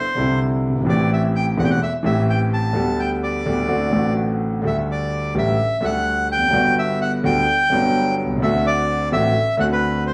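A reedy, airy bandoneon opens this dramatic tango fragment, carrying the melody up front, and a warm concert grand piano joins it at 0.2 seconds. The feel is rubato and passionate, with the piano's accompaniment reaching down into a deep bass register while the bandoneon sings brightly above it. The piano has an intimate, vintage character, and the clatter of its action is audible. The harmony moves from Cadd9 and Am7 through G/D, D7 and Dsus4 before settling on Gmaj7 and returning to D7 near 8.4 seconds. The duo sounds as if it is playing live in one room, bathed in a wet studio reverb, and both parts continue to the cut at 10.1 seconds.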